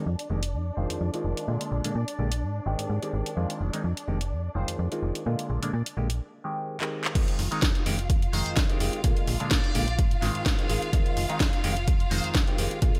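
Filtered disco house at 127 BPM in F dorian, this sensual, nostalgic excerpt swings its sixteenths lightly over a cycle of Fm7, Bb7 and Abmaj7 chords. A mellow, stringy clav played through a combo amp carries the accompaniment with a phaser, while a lush, bowed violin section holds sustained chords with expressive vibrato, and a snappy, metallic-attack FM bass sits up front. Both the violins and the bass pump with the sidechain under a low-pass filter, as do the clav and a muted trumpet section, whose buzzy, thin melody stays in the background with vintage 12-bit sampler grit. The house drum kit brings a cracking snare, handclaps, bright hats and a crash, overdriven and wrapped in gated reverb, with the hats and cymbals pumping. A filter sweep builds through the opening, a brief break and drum fill lead into the drop at 7.2 seconds, where a punchy analog kick, re-recorded in a small room, enters up front. 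The bright 1980s-style digital production adds light reverb and digital ambience to the whole mix.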